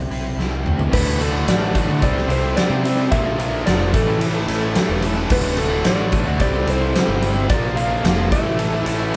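A cranked stack guitar and a sludgy, overdriven guitar open this driving, sunny classic rock excerpt at 110 BPM in a straight 4/4, together with a growling, punchy fingered bass, while a huge arena drum kit with a fat snare and punchy kick sits up front and plays a fill from 0.4 to 0.9 seconds. At 0.9 seconds a clean, dark lap steel guitar enters with a compressed slide melody played with fingerpicks, alongside a double-tracked overdriven electric guitar riff that sits in the background. A gritty tonewheel organ with key click and slow rotary speaker holds sustained chords, barely audible beneath the band, and a grainy egg shaker ticks very quietly from a distance. After an opening C, the harmony moves through D, C, Bb and A, cycling twice. The whole band sounds like it was recorded playing live in one large room, with a moderate studio reverb giving the sound a natural, roomy spread.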